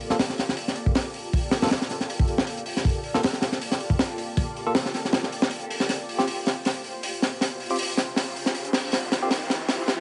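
Light reverb and small-room ambience frame this raw, dark drum and bass and jungle excerpt, shaped as one long build-up under a filter sweep. Up front, a crunchy, saturated breakbeat kit with a rolled-off top, a punchy kick and a high-tuned snare breaks into a drum fill at 5.9 seconds as the harmony moves from Gm9 to Fsus2, while in the background a silky, vintage string machine holds slow-attack chords through phaser and ensemble chorus. Barky, clean tine electric piano stabs, played through a combo amp with low-pass filter and dub echo, sit back in the mix, and an electronic riser enters at 6.8 seconds.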